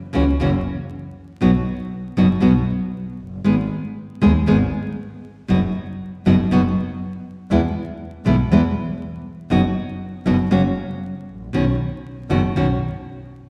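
A passionate, tense tango fragment in a free, rubato feel, with an up-front classical nylon-string guitar fingerpicking a warm accompaniment over a single bowed double bass whose close, biting tone carries vibrato and an airy edge. Both play from the opening moments to around 12.7 seconds, moving from F#7 through B, G#m and E before the harmony drops out at 10.5 seconds and settles on a Badd9. A wet, hall-like reverb surrounds the pair, and a vinyl crackle sits under the sound.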